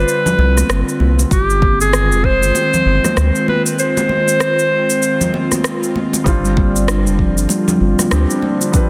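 Warm and mystical, this short excerpt from a longer organic downtempo piece moves at 97 BPM in 4/4 with a swung sixteenth-note feel, drifting from G7sus4 to Fm7 and back. A bright, smooth-topped clarinet sings the melody up front in a classical style, touched with digital delay, until about 5.6 seconds, while an airy, breathy pad with chorus and sidechain pumping holds sustained chords beneath it. A round, deep analog bass sits up front with the same pumping, and electronic cabasa and rim click, tape-warm with soft clipping on the snare, ride alongside ringing, hard-handed congas tucked in the background. A deep electronic kick drum appears briefly before returning at 6.3 seconds, just as a felt-muted upright piano enters, intimate and mellow with audible action noise, joined by a meditative stainless-steel handpan playing arpeggios, both carrying digital delay. A lush hall reverb and a dense, heavily limited modern master bind the parts together.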